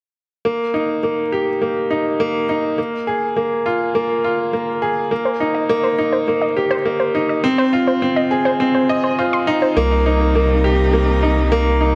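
A moderate, lush hall reverb surrounds this intimate, moving piece of piano and strings electronica, cut from a longer work. A bright, woody upright piano sits up front from 0.5 seconds, carrying a riff with long sustain and a touch of delay over chords moving from Bbsus4 through Cm7 and Fm7. Between 5.3 and 9.7 seconds, a warbling, vintage unison pluck joins in the background with short, detuned sawtooth arpeggios, coloured by cassette tape character, delay and a filter sweep. At 9.8 seconds the music opens into a new section as a dark string quartet enters with sustained, bowed chords, its single players adding vibrato and portamento in an expressive chamber voice. Beneath it, a deep, round sub bass with tube saturation holds a low C to anchor the closing Cm7.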